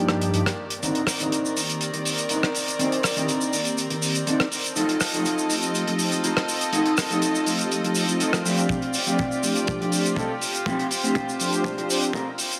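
A dark, clean, fingered electric guitar riff, lush with chorus and dub echo and carrying a filter sweep, threads through this sensual, cosmic nu-disco build-up over round, detuned sawtooth synth brass with its own sweep, floating bowed strings that pump with sidechain, and a damped, up-front 70s drum kit of hi-hat, rim click, shaker and toms, until a tight, dry kick arrives with a drum fill at 8.7 seconds inside a moderate echo-chamber reverb.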